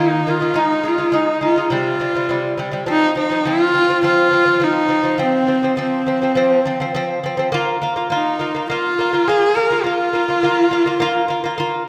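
Over a steady, straight four-beat pulse, this passage from a longer Mongolian folk piece unfolds in a vast, solemn mood, with a new section opening at 2.9 seconds. Up front, a single bowed horsehead fiddle carries the melody in a husky, focused voice, its horsehair strings sliding between notes with vibrato and a slapback echo trailing close behind. Beneath it, a delicate fingerpicked lute with nylon double strings, some doubled at the octave, spins bright arpeggios, and the whole performance sits in a lush, wet scoring-stage reverb.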